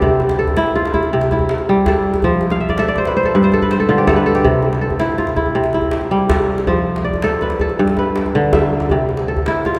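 Set in 12/8 at 108 beats per minute counted in dotted quarters, this short cut from a longer piece of West African traditional string and xylophone music has a straight, steady pulse and a joyful, hypnotic mood. A fingerpicked kora carries the arpeggios from start to finish, its ringing, crisp tone sitting up front and spanning G2 to F5. A djembe plays percussion throughout the 9.8 seconds, tight and cracking under soft hands, heard from a distance in a large room and set lower in the balance. Between 2.5 and 4.4 seconds the kora breaks into a fill before settling back into its arpeggios. The harmony stays bright in C major, moving through C, F and G chords, and a long cathedral reverb from a church or concert hall lets the strings hang in the air.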